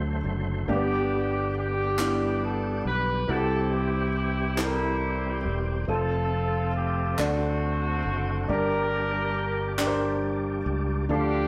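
Slow gospel in 6/8 at 46 BPM, reverent and hopeful, with a dark, mellow grand piano (its action noise audible) and a round, punchy fingered electric bass anchoring a progression that moves from D7 through G, C and F, then back to D7 before a closing G minor. A tight, clear horn section carries the melody from 0.7 seconds, while a lightly overdriven tonewheel organ holds thick chords in the background, its fast rotary speaker and chorus vibrato adding motion. Crisp group handclaps join at 2.0 seconds, and the band plays live together in a moderate stone room, lending this short cut from a longer piece an intimate, vintage feel.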